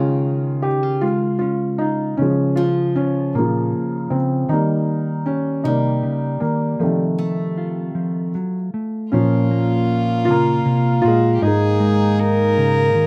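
A rough home-demo sound with moderate studio reverb frames this hopeful, tender acoustic folk-pop ballad, cut from a longer piece and moving slowly at 52 BPM in a straight 6/8 in Db lydian. Up front, a felt-muted upright piano carries the melody with a muted, intimate tone, joined by a dark, clean, fingered electric guitar in accompaniment. Beneath them, a bright, boxy parlour steel-string acoustic guitar picks arpeggios at a low level until 8.6 seconds. At 9.1 seconds the harmony turns to Bb minor and a single violin enters on a second line, pure and floating with a soft sul tasto attack, while a hand-pumped harmonium adds reedy, breathing sustained chords. Earlier the chords pass from Db through Eb and F7, and the passage settles on Absus2 near the close.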